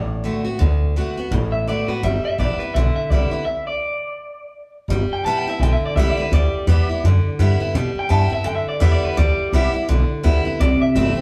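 Swung eighths drive this rollicking, rowdy rockabilly cut, with a thumpy, woody upright bass and a full-bodied picked acoustic guitar up front, while a twangy, slightly broken-up electric guitar carries the melody through a small old amp. A stop at 3.5 seconds breaks the groove, and at 4.9 seconds the electric guitar takes a clean solo. A large, wet studio reverb surrounds the band as it plays live in one room.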